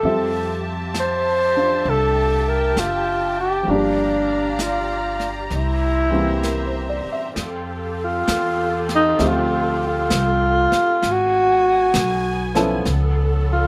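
A mellow alto saxophone, with subtone and a light vibrato, carries the melody from the first moment, set up front with a plate reverb over a late-night, intimate jazz ballad at 66 BPM in F major with a gentle swing. Beneath it, a baby grand piano accompanies with a natural, short-sustained tone and audible action noise, while a bowed string section holds lush, focused chords with its own vibrato. The upright bass is plucked on gut strings, woody, dark and thumpy, and a brushed drum kit with a medium-tuned snare and hi-hat sounds like a small room. From 7.4 seconds the saxophone moves into a smooth-topped solo as the harmony shifts from Fmaj9 toward Abm7 and a closing Dbaug7. The piano drops away at 12.9 seconds, leaving the others to finish this short excerpt cut from a longer piece.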